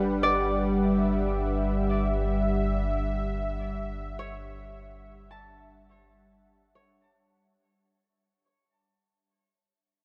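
A smooth, detuned sawtooth pad and a deep, rumbling drone open this serene ambient fragment together, with the whole passage fading out from 0.0 to 7.6 seconds as it is cut from a longer piece. The pad sits up front with soft attacks and long releases, holding sustained chords treated with chorus over a single Dadd9/G harmony. Beneath it, the dark, ominous drone anchors the bass with slow-swelling triangle and sawtooth tones, carrying its own built-in reverb. At 0.2 seconds a fingerpicked concert harp enters with ringing acoustic arpeggios in a high register, trailed by diffuse ambient delay, and it lingers until 8.7 seconds after the other parts stop. The tempo is a slow 53 BPM in straight 4/4, and a huge reverb with an 8.8-second decay wraps the warm sound in a vast, hazy space.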